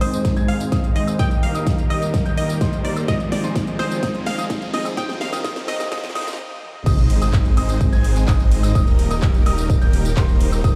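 A punchy, up-front electronic kick drives this anthemic, euphoric festival progressive house clip in Eb major at 127 BPM, joined by a big-room kit with a huge snare and metallic hats, a thick, menacing detuned saw bass and pumping supersaw chords with a filter sweep running through the build-up. A glassy wavetable pluck carries the melody with chorus and tape echo over a clean, picked electric guitar, both stopping by 6.4 seconds. A piano with audible action noise arpeggiates high above a very quiet, warbling unison pad, while a faint riser and sub drop lead through a brief break into the drop at 6.9 seconds, moving from Ab through Eb and Fm7.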